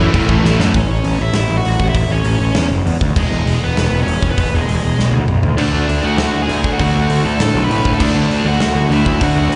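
A live punk rock excerpt heard through a venue's PA, with recital-hall reverb and a dulled top end, runs at 198 BPM in 4/4 with a rebellious, upbeat drive, settling into a half-time feel from 0.7 seconds over chords moving from A to E to D. A distorted, high-gain lead guitar carries the melody with slapback echo throughout, over a growly, fuzz-laden picked bass that sits up front and a big acoustic kit with bright cymbals, a punchy kick and drum fills at 0.4 and 5.0 seconds. A very quiet, bright double-tracked heavy guitar drops out after the opening burst, while a dark, sludgy distorted guitar and a compressed overdriven guitar play riffs in the background, dropping out at 0.7 seconds before returning at 5.6 seconds.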